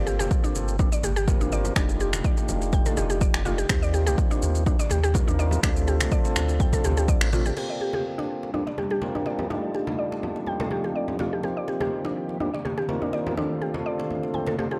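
An overdriven, punchy electronic kick drives this earthy, hypnotic afro house excerpt at 124 BPM in G minor, with a lightly swung groove and a round sine sub bass beneath it, while a deep house kit adds crash cymbal, finger snaps and shaker and ringing, distant congas play throughout. A woody, mallet-like FM synth pluck spins arpeggios, pumping against the kick, alongside clean tonewheel organ stabs through a slow rotary speaker over a Gm11, F13, Eb69, Dm7 progression. The kick drops out at about 7.2 s and the bass at 7.5 s, a filter sweep runs on the pluck from 7.6 s, and an ethereal, detuned pad with phaser and ensemble chorus enters with a slow attack at 8.3 s, all within a dry, gritty hardware sound.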